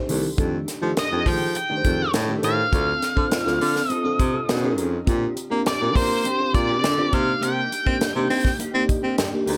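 A breathy baritone saxophone carries the bass line up front with smooth vibrato, while an octave-fuzz lead guitar with dark, distorted tone takes the melody from 1.0 to 8.6 seconds in this urban, nocturnal slice of polished 1980s jazz-funk pop at 102 BPM. A dreamy FM electric piano with a soft pad layer, tremolo and subtle chorus supplies lush accompaniment and fills at 4.2 and 8.6 seconds, as a clean, compressed guitar with lush chorus plays a riff in the background. A tight funk kit with a high-tuned snare and gated reverb drives the groove over F13, Dm7 and Bb69 chords, all in light reverb.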